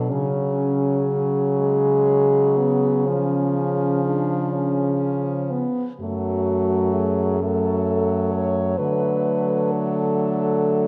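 Bathed in a wet concert-hall reverb, this brief classical excerpt for horn quartet unfolds at a rubato 39-44 BPM in dotted quarters in 12/8. Its elegiac, yearning mood comes from a mellow French horn melody with light vibrato and a vintage tone, above a distant, roomy second horn line and a clear horn accompaniment, all grounded by an up-front, smooth-topped bass horn as the harmony moves from C#sus4 through C# and F#m to D.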